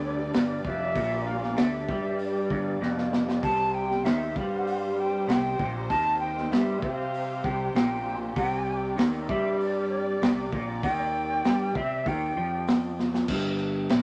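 Psychedelic rock at 97 BPM in a straight 4/4, this hypnotic, hazy passage is cut from a longer piece. A mellow jazz flute carries the melody with airy vibrato and a crisp chiff, while a dark symphonic string section holds lush, bowed chords beneath it. An electric guitar through a small old amp plays a twangy, slightly broken-up riff colored by a rotary speaker, and a fuzz fingered electric bass adds a growly, overdriven low end. The crunchy breakbeat drum kit enters at 0.3 seconds, sitting up front with a punchy kick, dark cymbals and a gritty, saturated character, and it drops in fills at 2.8 and 13.0 seconds. The harmony moves from G to C5, and the whole is set in a moderate studio ambience, with the chord changes dropping away at 13.3 seconds as guitar, bass and drums carry on to the end.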